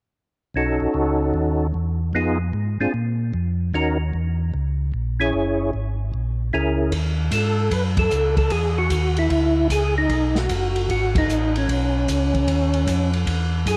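A percussive tonewheel organ carries the melody, its dark, round voice sitting up front with third-harmonic percussion, chorus vibrato and a slow-turning rotary speaker. Beneath it, a second, mellow tonewheel organ handles the bass line with a clean tone, audible key click and its own slow rotary speaker. This bluesy, greasy soul jazz organ trio swings in 4/4, working through seventh chords in B major before moving to a B mixolydian colour. The open jazz drum kit enters at 6.9 seconds, adding an airy, polished small-room sound with dark cymbals, a medium-tuned snare and a boomy kick, and the band hits accents at 7.9 and 11.1 seconds. Light reverb and studio ambience frame this short cut from a longer piece.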